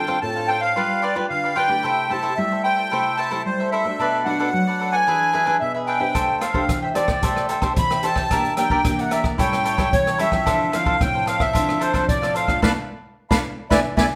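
A samba and choro piece in A minor moves at 111 BPM in a straight 4/4, its mood bittersweet and nostalgic, in a short passage cut from a longer performance. A reedy, sweet accordion with light tremolo tuning carries the melody from C5 to B5, sitting close-miked, dry and up front. Beneath it a crisp, picked cavaquinho and a dark, full-bodied fingerpicked nylon-string guitar supply the accompaniment, the guitar reaching down to A2 with a deep classical tone. An airy, polished open jazz drum kit joins at 6.2 seconds with hi-hat, boomy kick, rim click and a medium-tuned snare, placed up front. The harmony wanders through chords such as Dm7, G7, C6, Am7, Em7b5 and A7 before landing on Bm7 for a band accent at 12.6 seconds. The group plays live together in one room, bathed in a large, wet studio reverb.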